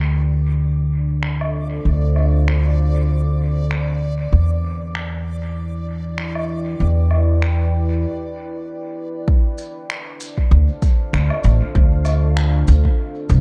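Spacious and meditative, this ambient dub excerpt in D dorian moves at 97 BPM with a light swing: a deep, detuned sawtooth pad with chorus and reverb holds Dm7 and Em7 chords through a filter sweep, a woody pizzicato upright bass sits up front, muffled finger snaps, woodblock and shaker drift through dub echo, a reversed granular swell glimmers from 0.2 to 8.0 s before a brief break, and an overdriven electronic kick thumps in at 9.3 s, all set in a dark studio reverb.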